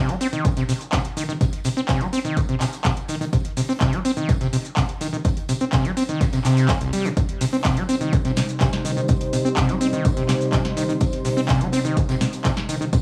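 Acid house with a hypnotic, gritty mood, this excerpt is driven by a squelchy, resonant sawtooth acid bass riff, distorted and tube-saturated with tape echo, sitting up front beside a dry, punchy overdriven kick that enters at 0.4 seconds. A booming analog drum machine adds handclaps, shaker, a crisp snare and metallic hats, with a short room on the claps, snare and hats, while a very quiet acoustic rock kit in a big room contributes hi-hat, snare and tambourine underneath. At 7.2 seconds a mellow, detuned sawtooth pad arrives with sustained chords, treated with chorus and sidechain pumping, all set in small room ambience with moderate reverb.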